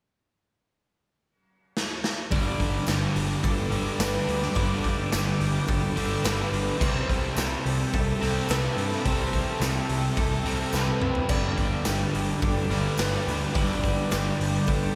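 A shoegaze and dream pop rock cut from a longer piece, moving at 107 BPM in a straight 4/4 with a dreamy, wistful mood. A raw garage drum kit sits up front, its punchy kick and medium-tuned snare saturated and gritty in a pumping stone room, and a fill at 1.7 seconds brings in the band at 2.3 seconds. From there a thick, dark fuzz guitar with lush chorus, a bright, double-tracked overdriven semi-hollow guitar and a very quiet, scooped twangy electric guitar all play riffs over a punchy, overdriven fuzz bass. Behind them a shimmering, octave-doubled twelve-string acoustic guitar picks arpeggios with subtle chorus and slapback echo, while a warbling, lo-fi tape-like pad holds nostalgic sustained chords. A jingly tambourine joins in the background at 2.9 seconds, and the chords move from G to C6 at 6.8 seconds and back to G after a second drum fill. A wet concert-hall reverb with a long tail washes over the whole mix.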